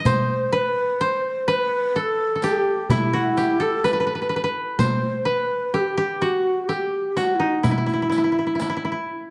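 A dark, warm production sets this short fragment of an Arabic maqam ensemble in a wet recital hall whose reverb hangs for about 1.3 seconds. The mood is hypnotic and melancholic, carried in a straight 10/8 metre. An acoustic koto plucked with fingerpicks leads the melody from up front, its mellow, woody tone kept dry. A breathy ney adds a second line, its end-blown reed-cane voice close-miked, tongued and unsteady, with vibrato. A clay-shelled darbuka with natural skin sounds close and dry, while a riq's bright jingles, struck with hard hands, arrive from a more distant, roomy position. All four parts play together from the opening moments until about 9 seconds in.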